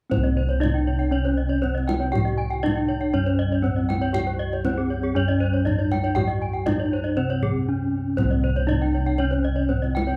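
A dry, close studio sound with a 1970s character frames this shimmering, brilliant Balinese gamelan passage in C pelog, moving at a straight 119 BPM in 4/4 and cut from a longer piece. A dark, smooth bronze metallophone struck with horn mallets carries the melody, while two brighter metallophones, one of them notably airy and entering at 0.4 seconds, spin arpeggios above it, their paired tuning producing ringing, beating shimmer. Round, up-front bossed gongs anchor the bass, and a deep kendang, played with soft hands and heard distantly as if in a large room, adds percussion and a short fill from 7.6 to 8.2 seconds.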